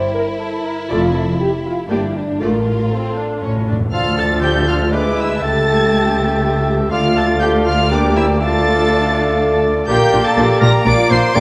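Urgent and stormy, this quick classical-period movement for symphony orchestra in triple time opens with a present French horn section holding chords beneath a rich, focused violin second line. A dark, distant violin melody soon joins over a background viola accompaniment, expressive cellos with portamento, and woody double basses. A soft-mallet timpani fill at 3.4 seconds leads into the second section at 3.9 seconds, where a clear oboe, a clarinet and a pure flute add second lines, and a bassoon supports the accompaniment, all set in a wet concert hall reverb.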